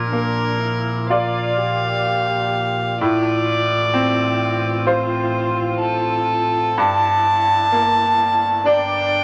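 Fragile and reflective, this short neoclassical passage for piano and strings moves at a slow 64 BPM in 4/4 with a rubato feel, cut from a longer piece. A warm, pure violin carries the melody up front, its soft attack and sul tasto bowing giving a floating, smooth line from A4 to A5. Beneath it, a bright concert grand piano plays the accompaniment, brilliant yet worn and intimate, with audible action noise and deep bass that keep it present and close. A dark, woody viola adds nasal, vibrato-tinged support in the background, while a distant bowed double bass anchors the low end with a warm, pure, sul tasto tone. The harmony moves from Bb to F/A at 3.0 seconds and settles on Gmadd9 at 6.8 seconds, all within a moderate studio ambience.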